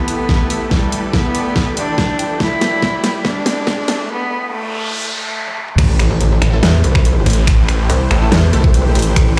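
Played on a big sound system in a bare room and bathed in large studio reverb, this menacing, chaotic heavy wobble dubstep excerpt opens with a rich, nasal solo cello melody with delay. Beneath it sit lush supersaw chords with sidechain pumping, a blurred granular cloud pad, electronic risers and noise sweeps, and an overdriven dubstep drum kit with a huge snare, bright hats and a knocking electronic kick. At 5.8 seconds the half-time drop lands on an impact, bringing in an up-front metallic wobble bass with chorus; at 6.4 seconds a snarling distorted saw bass joins it, followed at 6.5 seconds by a very quiet, punchy orchestra-hit-like synth stab.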